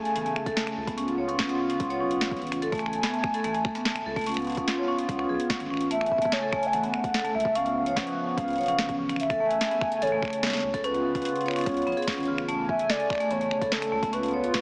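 A hollow, flute-like pad holds sustained Amaj7 and C#7 chords while a bright, ringing vibraphone spins arpeggios through digital delay, opening this glitchy, intricate IDM excerpt alongside a booming analog drum machine of finger snaps, metallic hats and a crisp snare run through tape echo, an overdriven electronic kick, and a deep, round analog bass tucked in the background. At 5.9 s a warbling, nostalgic lead enters with the melody, its detuned tone carrying subtle chorus and digital delay. The mix sits in a huge ambient reverb and is heavily compressed into a small-speaker radio sound.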